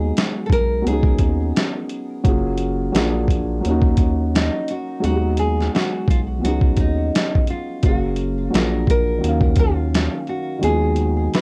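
Worn, warbling cassette tape with a drifting pitch and light reverb wraps this mellow, nostalgic lo-fi hip hop excerpt at 86 BPM, swung on the 16ths and cycling through jazzy chords such as G#m7/D#, C#9sus4, F#maj9 and A#7b13. A bright, fingerpicked nylon-string guitar carries the melody with audible finger squeak and tape echo, over a soft, thick-felt muted upright piano placed up front and a round, dark analog bass. From 0.2 s, a gritty, compressed boom bap sampler-style kit with a thumpy kick, a medium-tuned snare and hi-hat sits forward in the mix, re-recorded in a large room.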